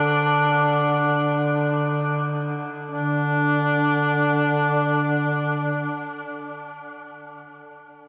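Longing and mournful, this short fragment of Caucasian folk music drifts in free time, slowing down through its opening 2.9 seconds. A mellow cor anglais carries the melody around D4 with light vibrato, soft attacks, a classical touch and a delay effect, while a duduk holds a low drone near D3, its notes scooped and trembling with vibrato in a folk manner. Both instruments sound distant yet up front, bathed in a huge, wet ambient reverb that gives the whole piece a dreamy, soaked atmosphere.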